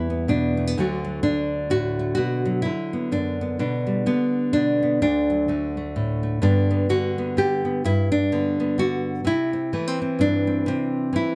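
A fingerpicked nylon-string guitar carries this short folk excerpt entirely on its own, sitting up front with a bright, full-bodied classical tone. The mood is nostalgic and pastoral, set in a lilting three-beat metre with a gentle swing on the eighth notes. The guitar ranges from a low D2 up to G4, moving through a chord sequence that starts on E minor and passes through D, B minor and G over B before returning to D. Around 6.4 seconds a second section begins, settling onto G and then C until the clip ends at 11.3 seconds. The recording has light reverb and a dark, warm production, and it is clearly cut from a longer piece.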